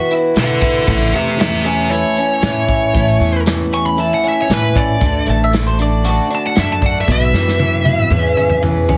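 A heavily compressed, radio-like sound with light reverb frames this nostalgic, jangly slice of folk rock and heartland rock, moving at 116 BPM in a straight 4/4 in A major. A dark, overdriven lead guitar sits up front with a smooth solo throughout, over a shimmering, octave-doubled picked twelve-string acoustic with lush chorus and finger squeak, a slightly broken-up, lo-fi electric riff through a small old amp, a thumpy, woody pizzicato upright bass, and an airy, polished country drum kit with a punchy kick. A bright bowl-back mandolin adds a brief second line at 5.3 seconds, and a drum fill arrives at 7.1 seconds as the chords move from D to Bsus4 and E6.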